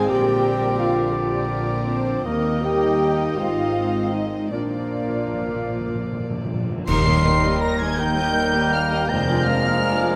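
A spacious concert-hall reverb surrounds this serene, tender excerpt from a slow romantic orchestral movement in Eb major, moving in a rubato 6/8 at about 49-58 dotted-quarter beats per minute. A dark, intimate violin section carries the melody with light vibrato and a soft sul tasto bow, reaching as high as C7, while an airy, hollow flute, a distant oboe and a second violin section play supporting lines beneath it. Violas and a solo bassoon fill in the accompaniment, a mellow French horn section and a bright trombone section hold sustained chords, and rich cellos and warm double basses anchor the bass with a pure, floating tone. A dark cymbal swell, clash cymbals and concert bass drum enter at 2.3 seconds, and round, soft-mallet timpani add a fill from 4.5 seconds. At 6.9 seconds the orchestra accents the arrival on Eb as a solo trumpet sounds stabs on Bb4, and the passage moves on to a Bb7/F chord.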